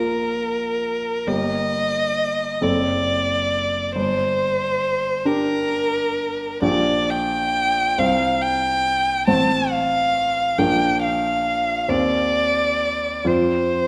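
In a slow, rubato 6/8 at about 45 dotted-quarter beats per minute, this tender romantic classical duo moves with uneven, breathing beats through a passage cut from a longer piece. Up front, a single rich, expressive bowed violin sings the melody with vibrato and portamento over a clear, polished baby grand piano accompaniment, both playing from start to finish. A wet recital hall reverb surrounds the pair as the harmony drifts from G minor through D7/F# to B-flat and C minor before settling on an open F at 13.3 seconds.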